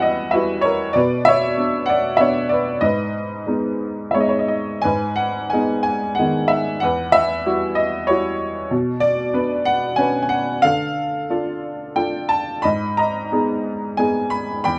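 A worn, woody upright piano sits up front and plays alone for the full 14.8 seconds, its slightly detuned tone giving a bittersweet, moody cast to this lyrical classical passage in G# minor. The piece moves in a rubato 3/4 at roughly 87-98 BPM, its chords drifting from Emadd9 through Bmadd9 to G#m, then returning through the same colours with a turn to Dm before settling again on G#m. A light reverb softens the room around the instrument, and the passage is cut from a longer piece.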